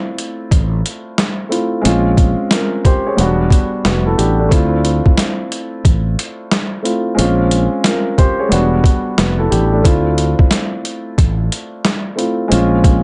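A swung 90 BPM boom-bap hip-hop groove in 4/4, moody and reflective, opens with a dark, mellow grand piano whose vintage, cassette-tape-filtered tone and plate reverb carry audible action noise over Dm7, Bbm7 and Em7 chords. A gritty, pitched-down sampler-style drum kit with a thumpy kick and medium-tuned snare enters at 0.2 seconds, and a bright, growly fretless electric bass with subtle chorus joins at 0.5 seconds in this short cut from a longer piece.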